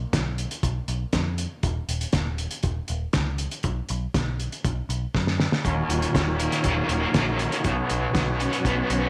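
Psychedelic rock with a trippy, mysterious air, this short excerpt opens on a dark, round picked bass and thuddy, cloth-damped drums with a fat snare and muffled, gritty top, while a faint buzzing tanpura drone shimmers underneath until 4.2 seconds. After a drum fill, an overdriven semi-hollow guitar, double-tracked and pulsing with harmonic tremolo, takes up a riff at 5.6 seconds, joined by a tonewheel organ holding sustained chords through a slow rotary speaker with audible key click. The chords move from Dbsus2 over Eb through B5 to Ebm7 and Bsus2, set in a small room with moderate echo chamber reverb.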